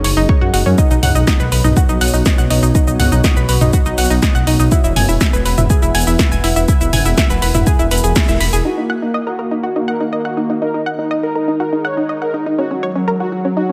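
A straight 4/4 pulse at 122 BPM drives this cinematic, hypnotic melodic techno excerpt in Eb phrygian, cut from a longer piece, with an electronic kick drum entering at 0.3 seconds, deep and tape-warm, beneath an overdriven deep house kit of punchy snare, metallic hats, shaker and toms that sounds re-recorded in a large room. Up front, a swelling detuned saw bass with a menacing, saturated edge and a filter swell pumps against the kick, while a round, bright analog pluck spins arpeggios through chorus, cassette tape colour and dub echo. In the background, a dark, warbling vintage pad holds sustained chords with chorus and its own reverb, also pumping to the sidechain. The band hits an accent at 8.2 seconds, and just before 8.7 seconds the drums and bass drop away. At 8.7 seconds a smooth, soft-attack supersaw melody enters alongside the pad and pluck, run through a low-pass filter and digital delay, while filter sweeps move across both the supersaw and the pluck. 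The chords travel from Gb6 through B and E to Ebm before returning to Gb6, all set in light reverb and a digital ambience.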